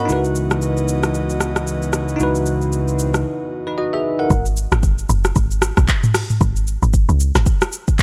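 A dry, gritty recording with digital ambience frames this deep, soulful amapiano excerpt, where a bright, bell-like tine electric piano with analog chorus and a soft, breathy pad with chorus sustain a C#m11 chord over dark, round fingered electric bass and an up-front afro-pop drum kit with deep kick, woody snare and metallic hats, a very quiet downlifter and swell sits near the break, and at 4.3 s the drop brings in a punchy, percussive log drum bass.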